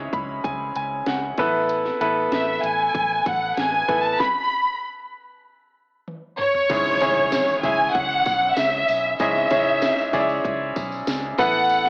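A brilliant, up-front grand piano opens this driving, bittersweet piano-driven pop excerpt in C# minor at 96 BPM with a fill, over a dark, round, foam-muted electric bass and an overdriven electronic drum kit with a punchy kick and cracking snare, before a lush, expressive violin section with vibrato takes the melody at 2.3 seconds, the piano and strings both carrying a cassette-tape tint. After a stop at 4.2 seconds and a drum fill, the second section arrives at 6.7 seconds with a very quiet electronic impact and a jingly tambourine set in the background. The whole recording has the lo-fi character of a home cassette recording heard over AM radio, with a light reverb.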